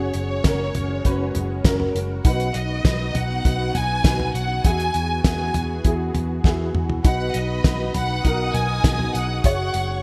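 Bright 1980s-style digital production with light reverb and a small room ambience frames this uplifting piano-driven pop excerpt in B major at 100 BPM, where a dry, up-front 70s drum kit with a fat snare, tight kick and gated reverb sits loudest over a round, foam-muted picked electric bass. A dark, woody upright piano treated with ensemble chorus carries the accompaniment beneath a distant, expressive bowed violin section singing the melody with vibrato, while a thick, detuned sawtooth pad with chorus holds slow-attack chords in the background. After a drum fill from 6.4 s, a second violin section with a smooth top and digital delay enters at 7.0 s with its own line.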